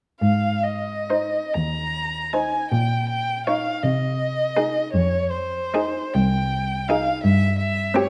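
Tender and lyrical, this fragment of a slow romantic string quartet movement unfolds in a rubato 6/8, with a smooth, vibrato-rich first violin carrying the melody up front over a focused, close cello bass from 0.2 s, joined at 1.1 s by a second violin's warm second line and a distant viola accompaniment whose soft attacks and expressive portamento glide beneath, all within a dark recital-hall glow.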